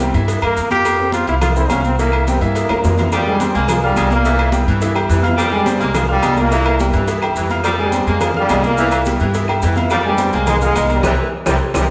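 Fiery, danceable salsa at 212 BPM in F harmonic minor, where a brilliant, punchy solo trombone leads until 3.0 seconds before a bright trombone section takes the melody over a vintage saxophone section's second line, all driven by a present grand piano with audible action noise, a growly pizzicato upright bass up front, and a background of high-tuned congas, low-tuned cowbell and bongos, and ringing agogo bells and timbales, joined by grainy maracas and very quiet woody claves, in a reverberant large room, closing on a band accent near 11.0 seconds.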